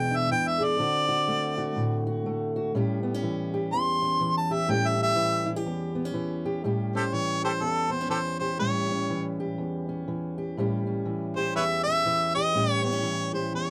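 A harmonica leads this short, swaggering slice of acoustic country blues, played in a jazz style with vibrato, tongue slaps and scooped notes over a smooth top end, and it takes a solo through the first 6.6 seconds. A fingerpicked steel-string acoustic guitar accompanies it from start to finish, its dark, woody tone carrying the character of old strings. Both instruments sit up front in a laid-back swing feel, while a moderate booth ambience lends a close, intimate sense of space. Early on the harmony moves from E7 to D7 and settles on A7 at 2.7 seconds, before a second section takes over the remainder of this passage cut from a longer piece.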